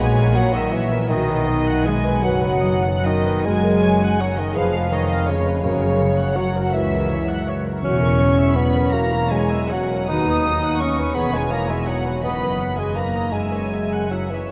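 A warm bassoon with light vibrato sits up front in this tender, lyrical excerpt from a slow romantic orchestral movement in 6/8 at 47-58 BPM with rubato, as sul tasto violins float a pure melody and second line over dark, woody, lush violas, mellow French horn chords in the background, ringing thumb-plucked harp arpeggios and a soft-edged bass of cellos and double basses, while hard-mallet timpani barely surface at 5.6 s, the whole set in a vast, echoing cathedral reverb with vinyl crackle.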